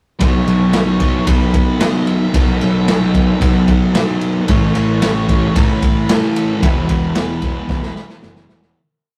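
A raw garage drum kit, gritty and saturated with a punchy kick, medium-tuned snare and ride cymbal, drives this wistful, dreamy shoegaze and dream pop rock piece at 112 BPM in B mixolydian. It starts together with a dark, thick fuzz guitar strumming chords with whammy-bar dips, a ringing overdriven semi-hollow guitar in the background, a warm fuzz picked electric bass pushing a dotted figure, and a distant octave-fuzz lead guitar tracing song-like motifs. The sound is a rough rehearsal-room recording with tube saturation and light reverb, and the chords move from B7sus4 to A and E before a fade-out from 6.6 seconds and a drum fill at 7.7 seconds.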